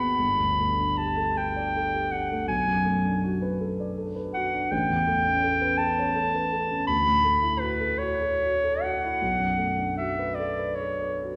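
A lush, reverberant church or concert-hall acoustic surrounds this short passage, cut from a longer classical work in an impressionist vein. A clear clarinet sits up front and carries the melody as a present, solo voice in classical style, singing within its middle and upper register. Beneath it, a dark concert grand piano, equally close, supplies mellow accompaniment rooted in deep bass. The music moves in a lilting 6/8 with a rubato feel, drifting through colorful harmonies from Gadd9 and Bm7 to Aadd9, D69 and back to Bm7. The mood is dreamy and pastoral, and both instruments play together from the opening moments until the passage ends at around 11.4 seconds.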